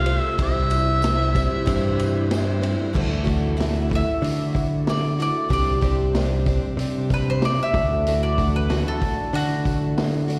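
Folk rock and heartland rock in D mixolydian at 94 BPM, this nostalgic, jangly excerpt opens with a mellow, lightly vibrato harmonica with scooped notes over a shimmering, octave-doubled twelve-string acoustic guitar, a punchy up-front electric bass, a vintage drum kit with dark cymbals, a faint jingly tambourine and a very quiet tonewheel organ with key click and slow rotary speaker, before a bright bowl-back mandolin with slapback echo takes a solo from 4.0 s over Dadd9 and Csus2 chords, all heard as a live gig through the venue's PA with recital hall reverb.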